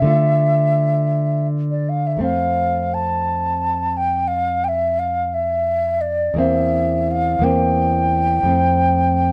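A romantic duo for flute and classical guitar in an elegiac, solemn mood, this brief cut from a longer piece moves at a rubato 57 BPM in dotted quarters in 12/8, tuned to A4 = 443 Hz, with an airy, mellow wooden flute carrying the tongued, vibrato-touched melody up front over a small, thumb-plucked nylon-string guitar accompaniment through Dm, F and C7/E, both captured by close, detailed microphones in a moderate studio reverb.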